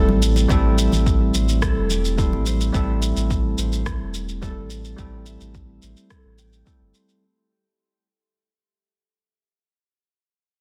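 A straight 4/4 pulse at 107 BPM comes from a deep electronic kick with a layered electronic shaker and rim click, their snare softly clipped, while very quiet, thin-skinned congas with soft hands sit underneath until 2.6 seconds. Over a round, sustained sine sub bass, a bell-like tine electric piano accompanies on an Am7 chord through a filter sweep and tape echo, and a fingerpicked concert harp ringing with arpeggios in a higher register carries on alone after 7.2 seconds until 9.0 seconds. This warm, wistful sunset chillout in A minor sits in light digital ambience under a dense, heavily limited master, and the short cut from a longer piece fades out throughout.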